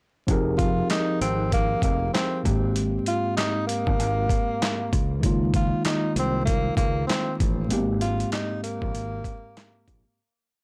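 Boom-bap hip-hop at 97 BPM in Ab major, with a 60% swing on the sixteenths and a soulful, warm mood, built as a short looping hook that starts at 0.3 seconds and fades out from 7.7 seconds. A gritty, compressed sampler-style drum kit sits up front, pitched down and re-recorded in a small room, with a thumpy hard kick, a medium-tuned backbeat snare layered with handclaps, and hi-hat. A fingered electric bass with tube saturation plays a deep, growly, punchy looped line with chromatic approach notes. A mellow tine electric piano holds clean, spread-voiced chords with grace notes, repeated like a sampled loop through Fm11, Abmaj9 and Db69. A breathy tenor saxophone enters at 0.6 seconds with a jazz-style short looping melody, using subtone, vibrato and scooped notes over a smooth top, set prominently in the mix with delay. The recording sounds blown-out and overdriven, with vinyl crackle and little reverb.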